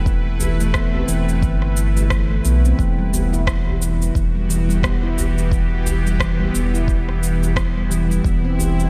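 A ringing stainless-steel handpan sits up front, its smooth, meditative arpeggios struck with the fingertips between E3 and E4 and trailed by tape echo from 0.3 seconds. This is a hypnotic organic downtempo excerpt in E minor at 88 BPM, in 4/4 with a gentle 16th-note swing. Beneath it, a round, deep analog bass with a fast attack and dark, sustained tone pulses with sidechain pumping, alongside a tense, string-like bowed drone that holds slow-attack chords with vibrato, a detuned sawtooth edge, a noise layer and its own built-in reverb. An overdriven electronic kick drum and a layered electronic cabasa and rim click, the latter with slapback echo, carry the beat, while a very quiet, distant djembe adds tight, cracking soft-hand strokes from a large room. The harmony moves from Asus2/E to Em at 2.8 seconds and on to Amadd9/E at 8.2 seconds, all under a light reverb that keeps the mix warm.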